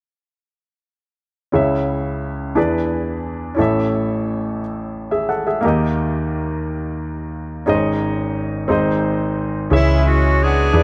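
A clear baby grand piano opens this fervent, soulful gospel excerpt at 1.5 seconds, playing an up-front accompaniment in C# minor at a slow 59 beats per minute in a straight 6/8 feel. Its chords move from C#m through E7, A and D#, then build tension on G#sus4 and G# before returning to C#m. At 9.7 seconds a bright saxophone section takes up the melody, its jazz-style ensemble sound carrying vibrato and analog delay. The same moment brings in a hollow-body short-scale electric bass, dark, round and punchy, sitting prominently in the low end. A light reverb and an echo-heavy mix give the short fragment a spacious, devotional glow before it cuts off at 10.8 seconds.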